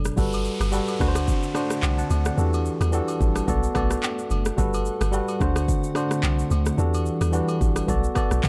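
A worn, slightly out-of-tune tine electric piano and a round, dark log drum bass open this hypnotic, mellow afrobeats excerpt with a light swing, joined almost at once by an overdriven electronic drum kit of handclaps, deep kick, rim click and shaker, while agogo bells and woodblock sit close and dry in the background, an electronic downlifter sounds until 4.6 seconds, and a hollow, flute-like pad with warbling ensemble chorus rests softly behind the repeating Gmaj9, D7, Em11 and Bm7 changes.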